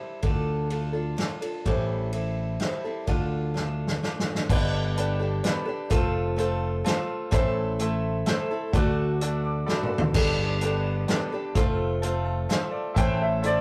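A boxy parlour-style steel-string acoustic guitar opens this wistful, dusty folk and heartland rock excerpt at 128 BPM in 3/4, soon joined by a punchy fingered electric bass and a natural, up-front country drum kit with a medium-tuned snare, moving through Dm, Am7, Gadd9 and F in a rough rehearsal-room sound with moderate booth ambience. At 4.5 seconds, after a drum fill, a brilliant concert grand piano enters high above, adding fills of its own, the first of them overlapping a second drum fill. A worn, woody, slightly detuned upright piano appears only at 13.0 seconds as the chords land on Am.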